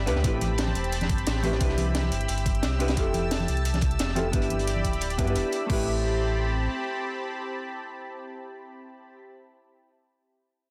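Liquid drum and bass at 176 BPM in A minor, this dreamy, soulful passage is cut from a longer piece and built on a chord cycle of Am9, Cmaj7, Fmaj9 and Em7. A dark, clean hollow-body jazz guitar plays picked accompaniment through a low-pass filter and dub echo, with a filter sweep on it until 5.7 seconds, while a lush, thick unison pad of detuned sawtooth sounds holds slow-attack chords with a warbling chorus. Up front, a deep sine sub bass with an octave layer anchors the low end with a fast attack until 6.7 seconds. The drums combine a knocking, overdriven electronic kick, an overdriven drum and bass kit with bright hats and crash cymbal, and a gritty, saturated breakbeat kit whose high-tuned snare and hi-hat sit behind a rolled-off top. Soft-handed, compressed congas sit in the background, and the parts share a light, small-room reverb. The drums drop out near 5.8 seconds and the bass follows at 6.7 seconds, leaving guitar and pad to carry the closing moments.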